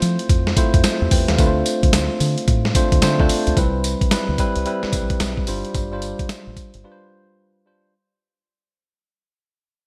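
Upbeat and bouncy, this new jack swing R&B piece at 110 BPM in C major rides a swung 16th-note groove of gritty, compressed sampler-style drums with a thumpy kick, tambourine and gated reverb, a round, punchy fingered bass and a clean, up-front tine electric piano comping through Fmaj7, Dm7, Cmaj7 and G7sus4 chords, all in a bright 1980s-style digital mix that begins fading at 3.6 seconds before the bass and drums drop out at 6.8 seconds, leaving the electric piano alone until the cut at 7.9 seconds.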